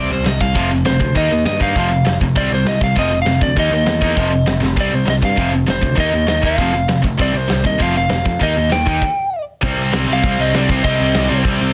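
An angry, urgent punk rock excerpt in C minor at 198 BPM opens with a dark, slightly broken-up lead guitar melody over a bright distorted guitar riff, a background overdriven guitar and a growly, punchy picked bass, joined at 0.1 s by an up-front acoustic drum kit with bright cymbals and a punchy kick that plays a fill at 4.6 s before the band stops from 9.0 to 9.6 s and comes back in on C minor, all under light reverb and a dense, heavily limited modern master.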